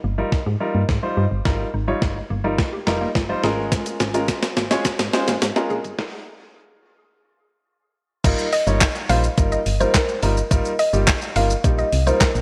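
Euphoric, upbeat dance-pop at 106 BPM, cut from a longer piece, opens on a very quiet, hollow square pluck playing arpeggios until 5.8 seconds, over a punchy, dark FM bass and a polished baby grand piano, both pumping with sidechain, while a crisp 8-bit drum machine with thumpy kick, fat snare, handclaps, hi-hat, shaker and crash sits up front. A build-up with a drum fill and filter sweep runs to a stop, then the drop lands at 8.2 seconds on an Ebadd9 chord, and a woody, mellow mallet-like synth pluck with chorus carries the melody from 8.5 seconds. The whole mix has the worn, warbly pitch drift of old cassette tape, with light reverb and a high-pass filter.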